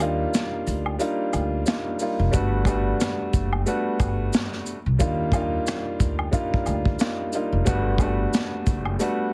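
A woody, up-front upright piano, a thumpy pizzicato upright bass on gut strings, a dark, smooth brush kit with a punchy kick and rolled-off top, and quieter maracas and woodblock open together on a break that lasts until 2.3 seconds in this nostalgic, warm boom-bap hip-hop excerpt at 90 BPM with a swung feel, moving between Ebmaj9 and Gmaj9 with little reverb and a heavily compressed radio sound.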